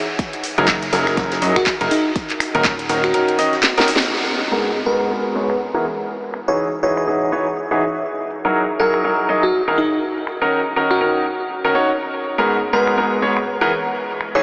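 A bittersweet, soulful piano house groove at 122 BPM in G# minor, swung on the sixteenths, opens at 0.2 seconds with a punchy, layered electronic kick, a house kit of cracking snare, metallic filtered hats, finger snaps and handclaps, and a very quiet, gritty acoustic kit tucked underneath. A bright, brilliant concert grand piano then takes up the riff, its deep bass pumping against the kick and trailed by tape echo, while a plucky, funky analog bass with a fast attack and decaying sawtooth bite pumps alongside it only until 3.1 seconds. A bell-like, sparkling FM electric piano carries the melody with chorus, tremolo and tape echo, moving through F#13, D#m7, G#m9 and Emaj9 chords. The kick drops out before a drum fill and a band accent lead into the second section at 4.1 seconds, where a filter sweep runs across the grand piano and the house kit and the two pianos carry on to the end. The whole mix is dreamy and soaked in a huge ambient reverb, with a small-speaker character, in this excerpt cut from a longer piece.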